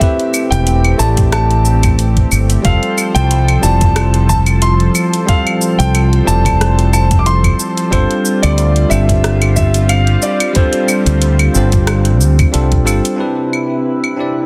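Sunny and blissful, this sunset chillout clip moves at 91 BPM with a light swing. A dark, mellow grand piano carries the melody through delay over a bell-like tine electric piano and a lush, detuned unison pad with chorus, moving from Am7 through Fmaj7 and G7sus4 to Cmaj7. A round, up-front fretless bass enters at 0.5 seconds alongside a gritty, thumpy electronic kick and an overdriven deep house kit of metallic hats, cabasa, claves and rim click, while at 13.6 seconds a calm, glassy harmonics texture drifts in the background of a dense, heavily limited mix.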